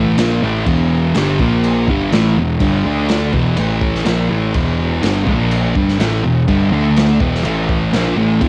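Garage rock with a swaggering, raw mood, cut from a longer piece: a thick, dark fuzz guitar, double-tracked and up front, drives the riff through power chords that keep returning to E5 with brief stops on A#5, D5 and A5. A growling, overdriven electric bass plays underneath, and a crunchy breakbeat kit with a tight kick, dark cymbals and a gritty, saturated, rolled-off top comes in at 0.2 s. The small room ambience and cassette tape on the guitar and drums give it a home-recorded feel.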